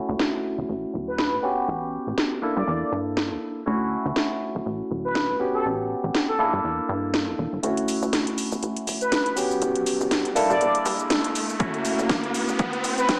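A swung 121 BPM 4/4 groove drives this funky, sunny filtered disco house piece in D major, where a barky, lightly overdriven tine electric piano sits up front with phaser and sidechain pumping over a plucky, detuned analog bass, an up-front house kit of cracking snare plus metallic hats and cabasa that pump under filter sweeps, fat chorused analog synth brass carrying the melody with vibrato and delay from 1.1 s, a riser building from 9.4 s, and a punchy overdriven electronic kick landing at 11.6 s, everything set inside a 1.4-second plate reverb with a small-speaker tint.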